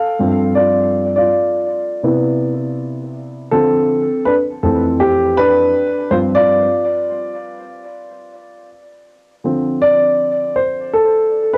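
Hip hop with a nocturnal, smoky mood, this short cut from a longer piece is carried by a lone concert grand piano. The piano sounds dark and mellow, with a deep bass, a vintage character and a short sustain, and it sits up front in the mix. Tape echo trails its notes, and a small, wet room reverb surrounds it. The swung sixteenth-note feel gives the chords a relaxed lean as they move through G9sus4, Cmaj7, Dm7, Fmaj7 and G7sus4 before a new section opens on Dm7 at 9.4 seconds. The home cassette recording lends the whole 11.6 seconds a lived-in, late-night texture.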